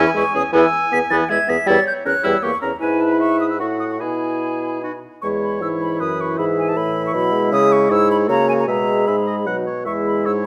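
A quick, graceful and lively classical-period movement for wind quintet in E major, moving in 3/4 at 156 BPM with a rubato feel, cut from a longer piece and turning from its opening phrase to a second at 5.2 seconds. A hollow, pure concert flute carries the tongued melody high above with vibrato, while a close-miked oboe with light vibrato sings the second line and a clear, smooth-topped clarinet adds accompaniment. Beneath them a warm French horn sounds distant and roomy, and an up-front, mellow bassoon anchors the bass, all caught by close, detailed microphones in light reverb.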